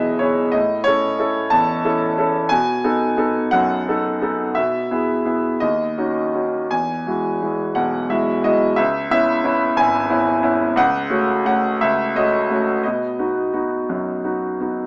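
Classical solo piano in a peaceful, calm mood, this brief fragment of a longer piece flows in a rubato 6/8 as a clear, up-front concert grand with a deep bass and open tone moves through its chord changes within a moderate stage reverb and a small-speaker sound.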